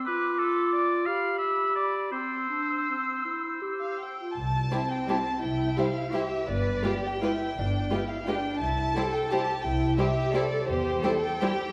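Classical in triple metre with a rubato feel, this short passage cut from a longer piece sounds sweeping and elegant. It opens with woodwinds sharing the second lines: an airy flute section with a soft attack above, a clear oboe with light vibrato and a vintage tinge up front, and a mellow solo clarinet beneath. Around 3.8 seconds a dark, woody chamber violin section takes the melody up front, and by 4.7 seconds the strings have fully taken over. A rich, close double bass section and a focused studio cello section carry the bass, while a second, expressive violin section and a smooth-topped viola section fill the inner voices, all bowed with vibrato. The ensemble sits in a church or concert hall with a lush, wet reverb that lends the string body a broad, resonant glow.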